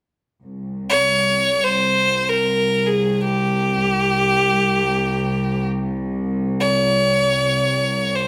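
In free time, this soulful, hypnotic Arabic passage in C maqam hijaz, taken from a longer piece, opens at 0.4 s with a warm, smooth bowed cello section holding a steady, even drone on C2 with vibrato. At 0.9 s a single close, intense violin enters up front with a bright, airy-bowed melody full of vibrato, ranging from G4 to Db5+21c. The players perform live together in one studio room, and a moderately large reverb adds depth around them.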